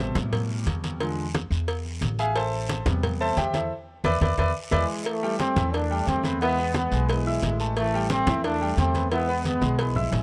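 A tight, punchy trombone section carries the melody in this danceable, passionate salsa excerpt. It enters at 4.7 seconds with a clear, present tone and light vibrato, and it sits up front in the mix. The clip moves at a brisk 178 BPM in 4/4 with a straight feel, in A minor, cycling between Am7 and E-based chords. Before the horns arrive, a concert grand piano with deep bass and an open sound takes a solo passage until 5.1 seconds. It plays over a woody, thumpy upright bass with dark gut strings. Ringing, low-tuned congas, a round cowbell set in the background and a raspy guiro drive the groove, with a band accent and drum fills marking the turn into the second half. The recording is close and detailed with little reverb, giving most parts an intimate, dry presence, while the cowbell carries a touch of small-room ambience.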